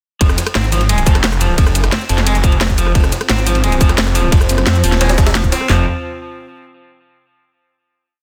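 A dense, heavily limited master with light reverb carries this futuristic, mechanical dark technical drum and bass piece: a snarling, growling distorted saw bass in chopped phrases sits up front beside two overdriven electronic drum kits with a tight kick, cracking snare and bright hats, while a very quiet, gritty, pitched-up jungle breakbeat loop runs underneath, a twangy, slightly broken-up electric guitar repeats an eight-step arpeggio with delay and sidechain pumping, and a moody analog pad enters in the background at 3.0 s before the drop gives way to a final chord at 5.7 s.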